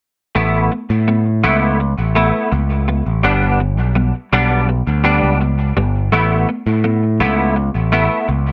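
From 0.4 s a clean, twangy electric guitar picks chorused arpeggios with analog delay over a bright, overdriven picked bass, both up front in light reverb, as this bittersweet, anthemic rock excerpt moves from Aadd9 to G at 3.2 s and back to Aadd9 at 6.1 s.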